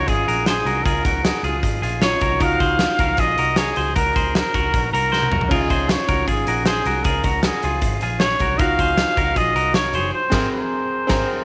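A straight 4/4 pulse at 155 BPM drives this breezy, nostalgic slice of jangly indie pop in Db major, cut from a longer piece. A big rock drum kit sits up front with a fat snare, punchy kick, hi-hat, toms and crash cymbal in a bright stone room, and a drum fill breaks through at 5.1 seconds. Underneath, a vintage muted picked electric bass gives a dark, round, foam-muted low end, while a clean electric guitar picks twangy, compressed arpeggios until 10.1 seconds. Chorused retro synth keys fill in glossy pulse and sawtooth tones with a filter sweep and fast, decaying attacks, moving through Dbadd9 and Ebmadd9 chords. On top, a breathy trumpet carries the melody with a soft attack, vibrato and a whispered, intimate pop-style tone, before the band lands a closing accent on Abadd9 at 10.1 seconds, all set in light reverb and small room ambience.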